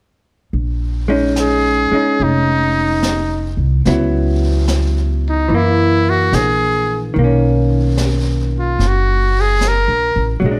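A woody, thumpy upright bass and a distant, roomy brush kit open this smoky, melancholic jazz ballad together at 0.5 seconds, settling into a slow 73 BPM swing in Bb minor. A dark, clean hollow-body electric guitar joins at 1.1 seconds with picked, compressed accompaniment. At 1.4 seconds the muted trumpet takes the solo melody, up front and buzzy, its thin, brilliant tone shaded with light vibrato and scooped notes. The brushed snare is high-tuned, with a rolled-off top and a touch of hi-hat, sitting well behind the pizzicato gut-string bass. The harmony drifts from Bbm11 through Dbm7 and Gb7 to Bmaj9 under light reverb, and this short cut from a longer piece ends at 10.6 seconds.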